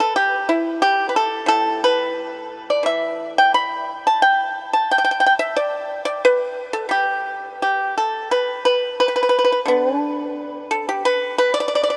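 A solo pipa, plucked with fingerpicks and sitting up front, carries this flowing, pastoral piece of Chinese traditional music, its acoustic tone dry and percussive as it ranges from A2 to B5. Played with a free, rubato feel around 89 BPM in 2/4 and set in the G gong mode, it moves into a new section at 8.3 seconds. A huge ambient reverb with a long 6-second tail surrounds the instrument across this 12-second fragment cut from a longer work.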